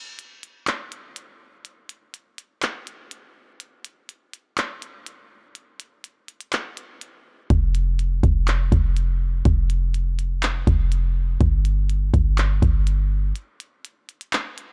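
A glitchy electronic drum kit opens this hazy, ethereal cloud-rap excerpt at 0.2 s, setting a half-time feel at 123 BPM with a soft kick, clicky hi-hats and handclaps placed up front. At 7.5 s a clean 808-style bass joins with deep, boomy sine tones between F1 and G1, each note striking quickly and then decaying, before dropping out at 13.3 s and leaving the drums to carry on until 14.7 s. The production is dark and dry, with little reverb.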